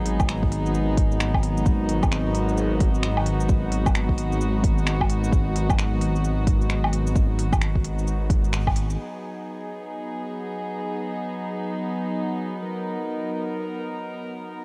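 A menacing detuned saw bass, saturated and up front, swells beneath a dark, reedy chamber string section holding sustained chords with sidechain pumping in this nocturnal, ghostly future garage excerpt at 131 BPM in G# minor, where a deep overdriven kick and crisp, gritty finger snaps, hi-hat, shaker and woodblock swing until a band accent at 8.5 seconds, after which the strings carry on alone from 9.0 seconds in light reverb.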